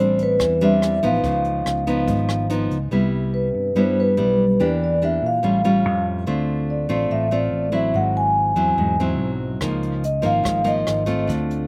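Vibraphone, played with soft mallets and carrying a mellow, ringing melody with slow motor vibrato and a slapback echo, leads this breezy, sunny bossa nova fragment over up-front fingerpicked nylon-string guitar, punchy amped fingered bass, and a brushed jazz kit with a boomy kick that plays only until 2.8 seconds and returns at 9.6 seconds, all in a dry outdoor sound as chords like Am11, Cmaj7 and Ab7alt pass by.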